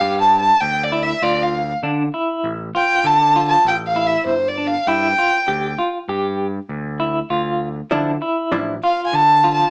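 Brooding and intricate, this short progressive instrumental passage moves at 99 BPM in a straight 5/4, centered on D minor with tuning set at A4 = 441 Hz. A dark, woody violin carries the melody as a solo for the full 9.7 seconds, played by one bowed player with vibrato and sul tasto tone, sitting up front between C5 and A5. Beneath it, a clean, twangy electric guitar plays arpeggios with a tremolo effect, while an overdriven picked electric bass adds a growly, punchy low end from G1 to D3. A vintage hollow-body jazz guitar, compressed and up front, slips in briefly from 7.9 to 8.7 seconds with dark, clean accompaniment. The harmony alternates between G5 and Dmadd9, and the whole of this fragment of a longer piece is framed by a wet studio reverb and a small speaker sound.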